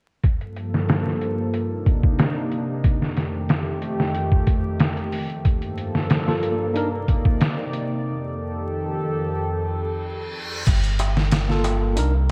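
Bright 1980s-style digital production, a lush hall reverb and vinyl crackle frame this brooding, dark trip hop excerpt at 92 BPM in G minor, where a nostalgic, detuned tape-like pad warbles through sustained Gm9, Cm9 and F9 chords over a gritty, pitched-down sampler drum kit with a thumpy kick and filtered hats and cymbals. A clean tine electric piano adds short touches with tremolo and tape echo, and an electronic reverse cymbal enters during the break at 9.8 seconds. At 10.7 seconds a round, deep analog bass enters up front alongside a crisp, distant metal-shell darbuka.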